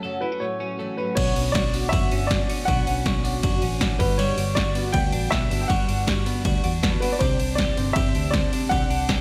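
Shimmering, octave-doubled fingerpicked twelve-string acoustic guitar with finger squeak and bright, twangy twelve-string electric guitar arpeggios open this nostalgic, breezy jangly indie pop excerpt at 159 BPM, joined at 0.2 seconds by a woody, slightly detuned upright piano melody, before a round, foam-muted vintage electric bass and a punchy, up-front electronic drum kit with gated reverb enter at 1.2 seconds over chords moving from Bmadd9 through Gmaj7 to Cadd9, set in a light reverb.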